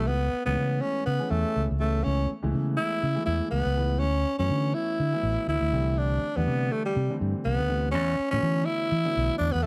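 A growling, raspy tenor saxophone carries the melody up front with light vibrato, over a warm, amped fingered electric bass and a mellow, vintage-toned dark grand piano in this funky, bright jazz excerpt at 122 BPM in A major, swinging lightly through chords from Amaj9/C# to Dmaj13, C69 and E7sus4 in light reverb.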